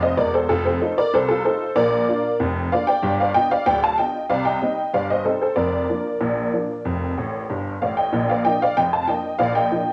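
Jaunty and playful, this short ragtime cut from a longer piece features a detuned, jangly honky-tonk upright piano playing solo at 94 BPM in 2/4 with a straight feel in Bb major, moving through F7, Bb, G7, Cm, Bb/F and F, with a bright fill at 7.2 seconds, its up-front, vintage sound set in light reverb and small-room ambience with the character of a home cassette recording.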